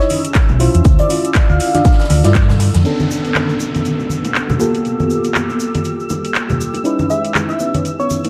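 A gentle, keys-like FM lead and a mellow FM electric piano open this smooth, late-night deep house excerpt at 120 BPM, the piano's chorused, delayed stabs pumping against the sidechain over a swung 16th feel and minor-ninth and add-nine chords. A dry, compact acoustic kit with a high-tuned snare and a silky, detuned string pad sit in the background from the start. They are joined almost at once by a cloudy, evolving granular pad, bright, saturated congas and bongos, a grainy vintage tube shaker and a layered house kit with metallic hats, handclaps and crash cymbal. A punchy, tape-warm electronic kick and a dark, round hollow-body bass sit up front through the opening stretch, with a band accent at 2.4 seconds, before the bass and the cocktail kit stop at 2.8 seconds. An electronic downlifter then drifts over the pads and percussion as the chords move through Bm9 and Gm9, all in a light reverb. 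At 7.1 seconds the lead returns alongside short, warbling, lo-fi pluck arpeggios as the harmony settles back on C#m9.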